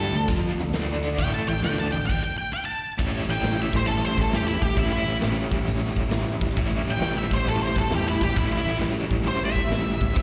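A driving, swaggering blues rock and southern rock power trio groove opens at once, with an overdriven electric guitar playing a picked, double-tracked riff treated with tremolo and slapback echo, while an octave-fuzz lead guitar carries the melody in a dark, distorted tone colored by wah, slapback echo and plate reverb. A fuzz fingered electric bass adds a growly, punchy low end with overdrive, and a big rock drum kit joins at 0.1 seconds with a punchy kick, a medium-tuned snare, hi-hat and bright crash cymbals. The tune sits in A mixolydian at 134 BPM in 4/4 with a swung eighth-note feel, moving over D5 and A5 power chords before the band hits a stop at 2.1 seconds. At 3.0 seconds the groove returns on an A7 chord and the lead guitar launches into a solo that runs to the end of this cut from a longer piece. The sound has the roomy, live quality of a gig heard through a venue's PA, with recital hall reverb around the up-front guitars and drums.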